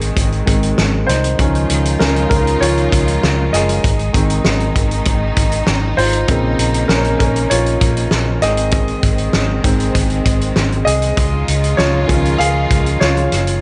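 Piano-driven pop with a hopeful, uplifting mood, this excerpt puts a polished grand piano with long sustain up front, carrying a solo throughout its 13.6 seconds over chords moving between Ab, Dbadd9 and Bbmadd9. Beneath it, a lush, distant string section holds bowed chords with vibrato, while a dark, round, foam-muted electric bass anchors the low end. A loose indie drum kit of kick, snare and hi-hat sits forward with a fat snare, punchy kick and a gritty, saturated character overall, all in a dry, close-sounding mix with a rolled-off top.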